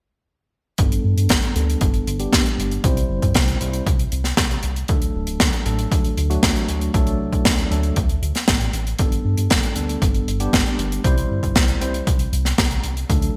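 Sunny and danceable, this italo disco excerpt pairs a glossy, dark chorused synth bass with a punchy analog kick and a tight, airy funk kit of hi-hat and high-tuned snare under gated reverb, while a clean tine electric piano plays tremolo stabs through a combo amp and digital delay, both piano and bass carrying filter sweeps over a Gadd9, C and D progression in a bright 1980s-style production.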